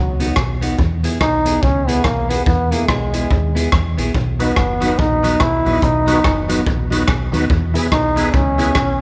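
A clear, up-front trombone carries the melody in this cheerful, joyful ska piece, its punchy pop-style tone marked by a light vibrato as it ranges from F#3 to E4 across the whole 9-second excerpt. Beneath it, a deep dub fingered electric bass gives a dark, round, foam-muted low end, while a clean, picked electric guitar adds warm accompaniment. A raw garage drum kit sits up front with a boomy kick, hi-hat and rim click, its saturated, gritty sound and rolled-off top pumping in a small room. At 4.4 seconds an overdriven tonewheel organ joins with thick stabs, bringing key click, chorus vibrato and a slow rotary speaker. The tempo sits at 143 BPM in 4/4 with a swung eighth-note feel, the harmony moving between B and E, and a moderate echo-chamber reverb gives the whole band a shared sense of space.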